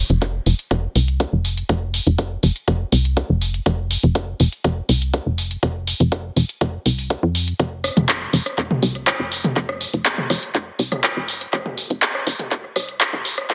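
Echo-heavy and lightly reverberant with a thin, high-passed sheen, this dark, dramatic melodic techno excerpt builds under a filter sweep across its full 13.5 seconds: a tight, ring-modulated sawtooth-and-square sequencer bass with fast-attack, decaying filter-plucked notes pumps to the sidechain up front, while a large-room analog drum machine sends handclaps, rim clicks, hi-hats and toms through analog delay, with the hats and toms pumping too, and a layered, tape-warm, high-passed electronic kick punches in at the front.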